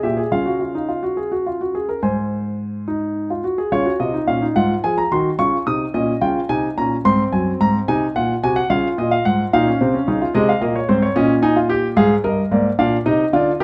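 Close, detailed microphones capture an intimate, natural-sounding concert grand piano, placed up front with audible action noise, deep bass and short sustain, inside a moderate stone room reverb. This solemn, driving baroque-style three-part fugue in Db major moves at 72 BPM in a straight 12/8, with the solo piano spanning Gb2 to Eb6. Cut from a longer piece, it turns to a new section at 3.7 seconds, its harmony circling Db and Ab before landing on Bb7 at 12.0 seconds.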